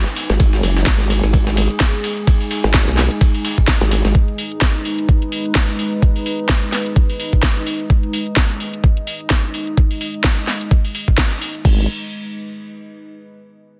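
A nasal, saturated vowel-sweep wobble bass opens this gritty, bouncy bass house excerpt in G# minor at 128 BPM with a 16th-note swing, joined by a deep, moody pad of sidechain-pumped sustained chords, a knocking, up-front electronic kick, a garage kit with a cracking snare and metallic hats, and a sampler-style breakbeat kit with a ride and a medium-tuned snare; the breakbeat kit and the bass drop out at 4.1 s, and the bass returns at 11.6 s over a dense, heavily limited, dry mix.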